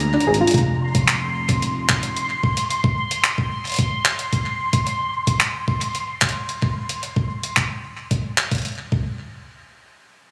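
A straight 4/4 jungle-style sampler kit of gritty, pitched-up handclaps and hi-hat drives this eerie, cerebral IDM cut from a longer piece, joined at 0.5 seconds by a thumpy electronic kick, while a rubbery, resonant acid bass sits up front until 2.3 seconds, a bubbling stepped-filter texture with chorus floats high until 7.0 seconds, and a soft, round pluck arpeggio and a very quiet, warbling lo-fi pad appear briefly in the opening break, the whole sounding as if caught on a phone in a club-reverb room.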